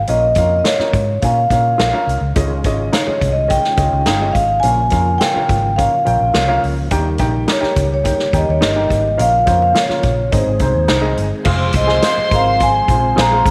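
A round, foam-muted electric bass opens this joyful, uplifting slice of uptempo 1960s-style soul, joined at once by a ringing soft-mallet vibraphone melody with slapback echo, a dark grand piano with audible action noise, and a big-band drum kit with punchy kick, snare, hi-hat and crash, while a clean, compressed electric guitar adds background stabs through tube saturation and spring reverb, a very quiet rotary-speaker tonewheel organ holds sustained chords from 2.4 seconds, and a floating sul tasto violin section brings a second line at 11.5 seconds, all in a small, lightly reverberant room with a faint mains hum.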